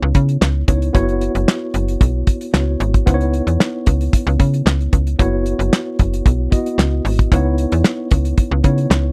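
A straight 4/4 groove at 113 BPM drives this short early-eighties boogie funk cut, with a dry, damped 70s kit of tight kick, medium-tuned snare, hi-hat and handclaps sitting up front with a rolled-off top. A snappy FM bass with a metallic, fast attack that then decays is also up front, while a worn, slightly out-of-tune tine electric piano, lightly overdriven and heard through built-in speakers, accompanies underneath on C#m9 and F#7sus4. The close, 1970s-style studio sound carries little reverb, giving the 9.1-second excerpt a late-night, danceable feel in C# minor.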